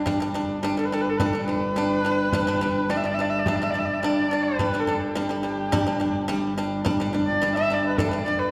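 Galloping and proud, this Mongolian folk passage, cut from a longer piece, lays a rich bowed double bass drone with vibrato and portamento beneath dry, percussive fingerpicked pipa arpeggios and a small, bright frame drum in the background, before a clear, husky horsehead fiddle takes up the melody at 0.8 s with vibrato and portamento, the group heard from further back in a wet scoring-stage reverb.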